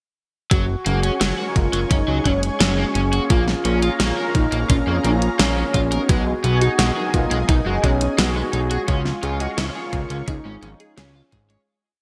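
Nocturnal and driving, this short synthwave piece moves at 86 BPM in a straight 4/4, with a bright, 1980s-style digital sheen and light reverb. A smooth, expressive portamento lead with vibrato, chorus and delay carries a hook-based melody, doubled in unison by a very quiet, dreamy FM electric piano with a soft pad layer. Underneath, a fat, saturated analog bass drives eighth notes up front, while a thumpy, tape-colored electronic kick and a layered pop kit with a fat snare in gated reverb and closed hi-hat set an 80s machine backbeat. A lush, detuned unison pad holds sustained chords with phaser and sidechain pumping, an overdriven, compressed electric guitar repeats a 16-step riff through chorus and delay, and mellow, brassy synth stabs play dotted-rhythm chords in the background. At 6.1 seconds a very quiet, nasal analog pluck joins with a 6-step arpeggio that drifts against the bar, and the whole verse fades out from 8.0 seconds over chords moving from F#sus2 through A#m7 and G#m7/B to C#.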